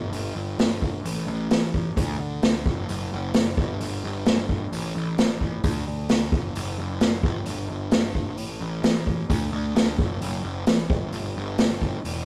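Classic rock with a swaggering, sunny mood, this short excerpt cut from a longer piece moves in a straight 4/4 feel. A fuzz-drenched, picked electric bass opens at the very start, its overdriven tone sitting up front in the low register between E1 and D2. A vintage acoustic drum kit joins at 0.1 seconds and carries on to the end at 12.2 seconds, built from hi-hat, a punchy kick and a medium-tuned snare. The kit sounds close and pumping in a small room, with a rolled-off top end giving it a warm character. Light reverb, a rough rehearsal-room quality and tube saturation lend the whole recording a gritty, lived-in feel.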